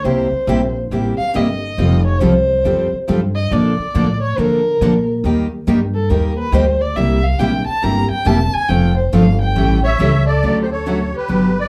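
A lively, charming swing at 139 BPM drives this short jazz manouche clip, where a dark, bowed violin with expressive vibrato and portamento solos until 10.4 seconds over two bright picked steel-string guitars, one full-bodied with finger squeak sitting in the background, and a woody, thumpy pizzicato upright bass, while a reedy, shimmering musette accordion takes the melody at 9.8 seconds, just ahead of the chords shifting to Dmaj7, all heard from further back in a club room with wet reverb.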